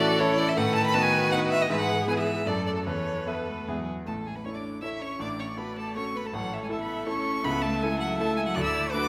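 A quick classical-period movement for piano quintet in A major, this 9.1-second cut from a longer piece moves at 160 BPM in 3/4 with a rubato feel, its mood dramatic and restless. A clear, close solo violin carries the melody up front, spanning A4 to F#6 with smooth, even bowing and vibrato. Beneath it a second violin, rich and set in the background, shares a second line with a cello whose smooth top and rich body reach down to D#3. The viola adds focused, vibrato-laden accompaniment, while the grand piano sits up front with a clear, vintage tone and short sustain, ranging from a deep A1 to E5. The harmony opens on A and passes through B7/A, E/G#, D/F# and an Esus4 resolving to E before the second section begins at 4.1 seconds, moving from A through D/A and A/C# to Bm7/D. A wet scoring-stage reverb with a 1.5-second decay wraps the ensemble.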